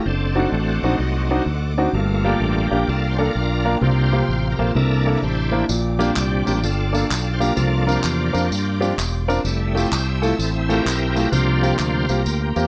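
Uplifting and jubilant, this short cut from a longer uptempo gospel piece swings in 4/4. A full, shouting tonewheel organ leads throughout, holding bright chords through a slow rotary speaker and chorus vibrato, up front in the mix. Beneath it a round, punchy fingered electric bass sits close and direct, while a warm baby grand piano adds natural accompaniment from 0.4 seconds. In the background, a bowed studio string section holds smooth, expressive chords with vibrato and portamento. At 5.7 seconds tambourine, egg shaker and group handclaps join, all in a small room with light reverb, as the harmony moves from a D7b9 over F# through Gm7, suspended C chords and Bb6 to Fmaj9 before returning to C7sus4.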